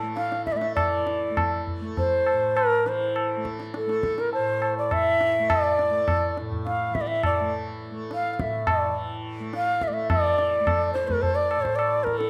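Hindustani classical music in raga Bhairavi on A, at about 103 BPM in 4/4 with an uneven pulse that gradually speeds up, carries an introspective, solemn mood across this 12.3-second fragment of a longer piece. A softly plucked, buzzing tanpura drone shimmers quietly beneath an airy bamboo bansuri, whose close-miked melody moves between A4 and F5 with vibrato, a soft attack and an unsteady, up-front presence. High-tuned, ringing tabla sits close alongside it, and moderate recital-hall reverb frames the performance, which shifts into a new section at 10.1 seconds.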